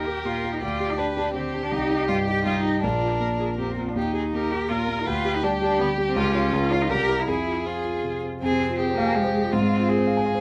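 A quick, cheerful classical-period movement for piano quartet in 3/4 at 162 BPM, cut from a longer piece, its harmony settling into F minor from 6.2 s after opening on Eb. A dark, mellow, intimate concert grand with a vintage character sits up front with deep bass and audible action noise, while a rich, distant violin carries the melody with smooth vibrato over a bowed viola accompaniment. An expressive cello adds a second line with portamento, and light reverb surrounds the lively ensemble.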